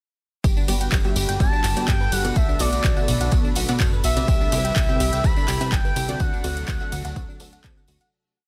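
A dense, heavily limited modern master with digital ambience carries this expansive, euphoric progressive house drop, where an overdriven four-on-the-floor kick, a house kit of handclaps, metallic hi-hats and ride cymbal, and a jingly background tambourine drive a funky sawtooth analog bass, a thick, pumping unison pad with vintage 12-bit grit, a crystalline wavetable pluck arpeggio and dotted-rhythm unison pluck stabs with tape echo, while a mellow portamento lead sings arching motifs and a very quiet twinkling granular texture enters at 1.8 seconds before the piece fades out from 5.6 seconds.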